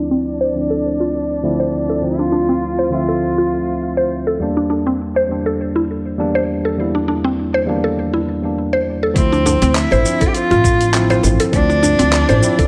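Warm and mystical, this organic downtempo excerpt in D minor moves at 101 BPM with a light 16th-note swing. It opens on a worn, slightly out-of-tune tine electric piano, lightly overdriven, pumping and soaked in tape echo, alongside round, woody FM synth-pluck arpeggios with chorus and cassette-tape color, both under a filter sweep until 9.2 seconds. Meanwhile a rich, bowed cello sings the melody up front with smooth vibrato until 4.1 seconds, shortly before the harmony moves from Dm9 to Em7b5 at 4.4 seconds. At 9.2 seconds the cello returns over Dm9 as a growly pizzicato upright bass, a thumpy, gritty electronic kick and a dusty sampler-style kit of handclaps, hi-hat and shaker join in, followed at 9.5 seconds by a very quiet, cracking djembe with metal rattles.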